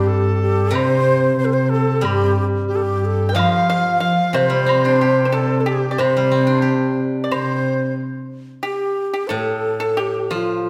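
Over a rubato two-beat pulse, this festive, pastoral Chinese chamber passage pairs a breathy, close-miked xiao melody with vibrato against a reedy, buzzing large dizi and a dark, woody bowed cello, both of which stop at 7.9 s; a silvery, ringing steel-string zither accompanies throughout, a very quiet woodblock sits in the background, and a dry, percussive fingerpicked pipa joins at 3.3 s, within a wet scoring-stage reverb.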